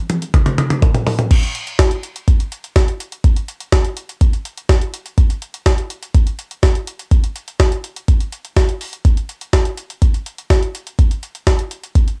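Melancholic and cool, this short pop clip cut from a longer piece moves at 124 BPM in a straight 4/4, carried by a jungle sampler-style drum kit of crash cymbal, hi-hat, kick, snare and toms that opens with a fill. The compressed, pitched-up kit sits up front with a gritty edge, a thumpy kick and a high-tuned snare, its cassette tape coloring adding to the character. Light reverb and a home cassette recording shape the sound, with new sections arriving at 1.3 and 9.1 seconds.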